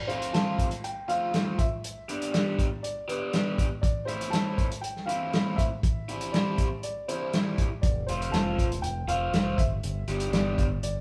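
A dark, woody upright piano opens this wistful, jangly indie rock excerpt at 120 BPM in G mixolydian, carrying the melody as an overdriven, compressed electric guitar riff with phaser and a muffled, lo-fi vintage drum kit with a punchy kick come in almost at once, the drums sitting up front. The harmony moves through F, G, Am and C before returning to F, where a bright, fingered electric bass joins at 7.8 seconds in its low register. The whole band sounds as if playing live together in a large studio with moderate reverb, and the passage is cut from a longer piece.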